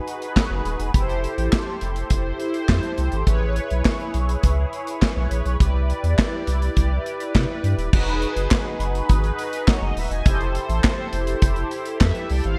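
A bright, 1980s-style digital production with light studio reverb frames this short, feel-good slice of early-eighties boogie funk, moving at 103 BPM in a straight 4/4. Mellow synth brass opens at 0.0 seconds as the accompaniment, its detuned sawtooth tone brassy and round, with chorus, phaser, vibrato and a filter sweep giving it an evolving shimmer across a range of D#4 to G#5. The modern studio drum kit arrives almost at once, an acoustic, small-room kit that sounds dark and smooth with a rolled-off top, featuring a tight kick, a medium-tuned snare, hi-hat, handclaps and crash cymbal. At 0.5 seconds a saturated sub bass joins, deep and thick with a triangle-wave core, fast attack and long sustain, ranging from D#1 to C3. The harmony glides through lush major-ninth chords, from a rootless Emaj9 through Fmaj9, Amaj9 and Cmaj9, then returns to Emaj9 and Fmaj9 as a second section begins at 7.9 seconds. 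All three parts sit up front in a danceable mix that is cut from a longer piece.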